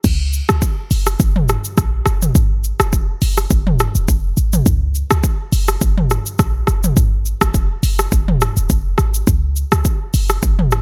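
A breezy, joyful afrobeats groove at 104 BPM with a light 16th-note swing runs through this short excerpt cut from a longer piece, as an up-front, layered electronic drum kit with a deep kick, dark hi-hats, crash cymbal, rim click, shaker and toms plays alongside a clean, boomy 808-style sine bass with a fast attack and mellow decay, spanning Eb1 to Db2, all in a dry, low-pass-filtered mix.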